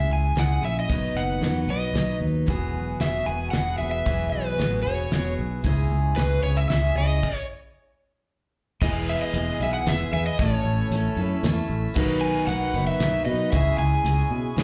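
An overdriven slide guitar sits up front and carries the melody with a slapback echo, opening this jangly, open-road slice of folk rock and heartland rock, cut from a longer piece. It moves at 114 BPM in a straight 3/4 in E major, over a bright picked steel-string acoustic guitar whose finger squeak comes through, also with slapback echo. A round fingered electric bass sits up front underneath, and a damped 70s drum kit comes in at 0.4 seconds with a fat snare, a tight kick, hi-hat and crash cymbal. A dark, reedy accordion enters at 2.5 seconds, holding mellow sustained chords in the background. The harmony moves from C#m through B and Eadd9. A stop at 7.2 seconds leads into a second passage that moves through E, A and B back to C#m. It sounds like a live gig heard through a club's PA, with the room's ambience and a light reverb around the band.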